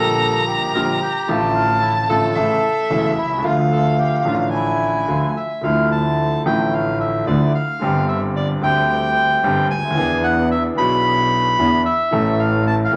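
This is a melancholic, tense tango in D minor at 111 BPM in 4/4, played with a rubato feel and cut from a longer piece. A reedy bandoneon sits up front and carries the melody between E4 and B5. A dark, bowed violin adds a second line with vibrato, soft attacks and expressive portamento until it drops out at 5.3 seconds. Beneath them, a warm concert grand piano supplies intimate, polished accompaniment with deep bass and audible action noise, while a single bowed double bass anchors the low end with a rich, focused tone and vibrato. Wet studio reverb surrounds the ensemble, and the harmony passes from Gm/Bb through Dm/A and A to Dm, then moves through Dmadd9, Gsus4 and E7 before settling on A near the close.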